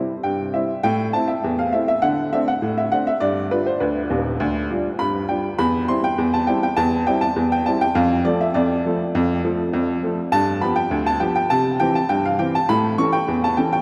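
A woody, boxy upright piano opens this lively, playful ragtime fragment on its own, playing in straight 2/4 at 101 BPM in C major and ranging from deep in the bass to high in the treble. Its short-sustained notes sit up front yet ring out into a vast, echoing cathedral reverb with a long tail. The harmony moves through C, A minor and D toward G7, resolves to C by 11.5 seconds, then shifts to A just before the cut at 13.8 seconds.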